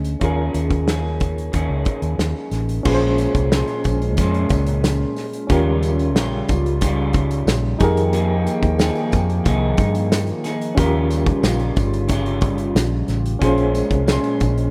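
A reedy, barky electric piano with light overdrive, fast tremolo and a cassette-tape grain opens this dreamy, hazy bedroom-pop fragment, joined from the start by a twangy, slightly broken-up guitar with subtle chorus and vibrato, a round, foam-muted vintage bass, and a loose acoustic drum kit whose tight kick sits up front in a pumping small room. At 2.9 seconds a hollow, flute-like pad with chorus enters with soft sustained chords, alongside a very quiet, jingly tambourine. The harmony drifts through lush ninth and eleventh chords such as Bbm9, Eb9 and Fm11, and the whole mix has the rough, lo-fi intimacy of a home demo.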